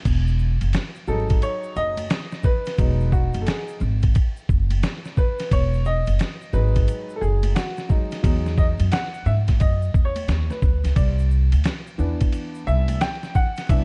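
A dark, muffled small-room sound, with vinyl crackle and a rolled-off top end, frames this short jazz-hop cut taken from a longer piece. At 88 BPM in 4/4 with a swung sixteenth-note feel, the mood sits somewhere between warm and cool, centered in E major. A pitched-down, compressed sampler-style drum kit sits up front with a thumpy kick, a medium-tuned snare, hi-hat, ride and crash. Beside it a woody, gut-strung pizzicato upright bass holds the low end. A tube shaker and congas ring quietly in the background, close and dry. An upright piano with a slightly detuned, vintage character and long sustain enters at 1.1 seconds and carries the lead over an Emaj9 chord, shifting to Cmaj9 at 11.0 seconds.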